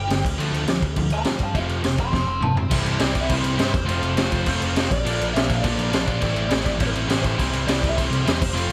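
This short excerpt from a longer punk rock piece sounds dry and close, with little reverb. It opens with a bluesy lead guitar solo whose tone is dark and distorted, trailed by a digital delay, sitting over Dm and F5 chords. A drum fill from 2.1 to 2.7 seconds launches the next passage. The harmony then moves through C, F, Bb and Am before returning to C. Underneath, a double-tracked, compressed electric guitar plays a bright, distorted picked riff up front, while a growly, punchy overdriven picked bass anchors the low end. The raw garage drum kit of kick, snare, toms and crash sounds gritty and saturated in a small room, with a boomy kick, a high-tuned snare and a rolled-off top, giving the whole thing a rowdy, rebellious energy.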